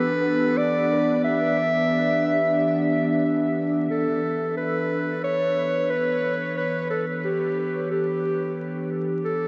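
A clear clarinet carries the melody up front in a classical style, its lines trailing off into dub echo across the whole 9.5-second excerpt. Beneath it, a warbly, tape-like pad holds sustained chords built on Em7, its detuned, nostalgic tone thickened by chorus and its own reverb, with slow attacks and long releases. This is ambient dub with a hazy, meditative mood, a gentle swing on the sixteenths and an unhurried four-beat pulse. From 3.9 seconds, a filter sweep moves across the pad as the music shifts into its second section. The whole mix is soaked in a huge ambient reverb, dusted with vinyl crackle and kept dark and dreamy, with the top end rolled off.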